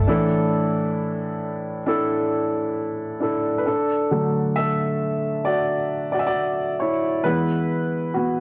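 A straight, unhurried 4/4 pulse at 67 BPM carries this tender, emotional pop fragment in D major, tuned to A4 = 438 Hz. A clear, open baby grand piano sits up front with long sustain, accompanying across a span from A2 to A5, while a very quiet, clean electric guitar, picked, compressed and recorded direct, adds brief arpeggios only in the opening 0.7 seconds. The harmony opens on Asus4, and from 3.7 seconds the piano plays alone, moving to D and on to Eadd9, all wrapped in light reverb and the intimate character of a home cassette recording.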